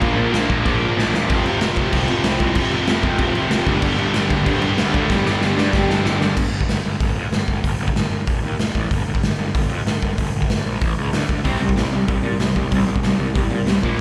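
A straight 4/4 beat at 189 BPM drives this urgent, aggressive punk rock piece, with a raw garage drum kit, gritty and punchy in a pumping stone room, up front beside a growly, fuzz-overdriven picked bass, while two bright, compressed distorted guitars with slapback echo play riffs in the background alongside a very quiet double-tracked tight guitar, the guitars dropping out after a drum fill near 6.3 seconds and the pair with slapback echo returning at 11.4 seconds, as heard from a live club gig through the venue's PA.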